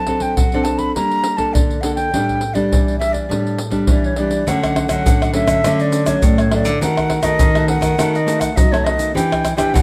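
Samba and choro in D major at 102 BPM, sunny and festive, taken from a longer piece. A wooden flute carries the melody with an airy, crisp-edged tone and vibrato over a full-bodied, fingerpicked nylon-string guitar, while deep surdo, pandeiro, tube shaker and tamborim played with soft hands sit close, dry and up front. At 4.5 s a second fingerpicked nylon-string guitar enters on the bass line with audible finger squeak as the harmony moves from Dmaj7 through B7/D# to Em7, all set in a moderate studio reverb heard from further back in the room.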